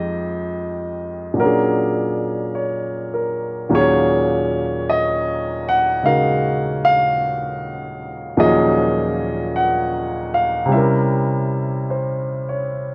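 Jazz in a melancholic, wistful mood, this brief excerpt features a solo baby grand piano with a natural, up-front tone and long sustain, heard through light reverb and the worn, warbling pitch drift of old cassette tape, moving from Fm7 through Bb7alt and Ebm11 to C7b9 at 10.7 seconds in a slow swing.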